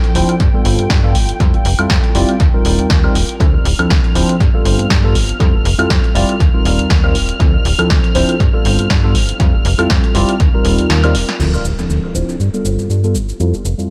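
A worn, slightly out-of-tune tine electric piano opens up front, played through a combo amp with phaser, tape echo and a low-pass filter, while a rich violin section holds soft, sul tasto chords with light vibrato in the background of this funky, sensual filtered disco house cut from a longer piece. At 120 BPM in 4/4 with a 16th-note swing of 55% in D dorian, the chords cycle through G9, Fmaj9, Eb6 and Dm9, and the piano, strings and snappy FM bass all pump against the sidechain under a filter sweep. A punchy analog drum machine, re-recorded in a small room, supplies cabasa, crash cymbal, hi-hat, snare and woodblock with tape echo, and its hats, percussion and cymbals pump too. The slap-like bass, with its metallic, fast attack and decaying tone, joins at 0.2 seconds, and an electronic kick drum lands at 0.4 seconds. The kick drops out at 10.9 seconds for a drum fill, and then a background impact arrives at 11.4 seconds as a new section begins, all set in an echo-heavy mix with light reverb.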